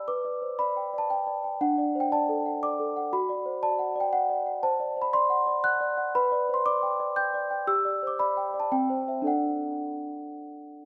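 This is a classical lullaby for solo celesta in G major, tender and dreamy, moving at 118 BPM in 3/4 with a rubato feel and tuned to A4 = 442 Hz. The celesta plays alone for the whole 10.9 seconds, ranging from C4 to G6 with a bell-like, delicate and sweet tone struck by medium felt hammers. Close-miked and up front, the instrument itself sounds dry and full, while a wet concert hall reverb with a 2.1-second decay surrounds it. The harmony drifts gently from G/B through D, D/F# and D7/C, returns to G/B, then passes through G5 and C before settling on D at 9.3 seconds. The passage is cut from a longer piece, so it stops on that unresolved D chord.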